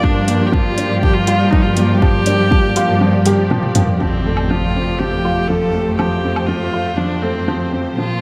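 A worn, woody upright piano riff and a clear, bowed viola melody, both carrying tape echo, open this moving, cinematic piano-and-strings electronica, set over a lush symphonic string section in the background and a dark cello section bass with sidechain pumping. A deep, up-front electronic kick plays until 2.6 seconds, while a deep house kit with metallic hats, toms and woodblock enters at 0.3 seconds and adds a drum fill from 3.3 seconds. At 4.0 seconds an electronic impact marks the chord change from Gm7 to Fadd9, as the slightly detuned piano and vibrato strings continue in light studio reverb.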